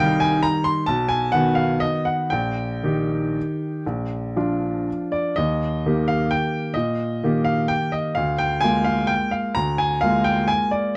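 Playful and graceful, this short classical piano waltz is cut from a longer piece and moves in 3/4 with a rubato feel, its tempo drifting between 113 and 140 BPM. A solo baby grand carries everything in Eb major, ranging from Bb1 up to C6 and sitting up front with a clear, intimate tone, long sustain and audible action noise that keeps it natural and close. The harmony opens on Cm, passes through B and Eb/Bb, and settles on Bb by 3.9 seconds. A new section begins at 5.4 seconds on Eb, then turns toward Bb7/D at 8.2 seconds before the 11-second clip ends. Light reverb and a dark, warm production frame the instrument, tuned slightly low at A4 = 439 Hz.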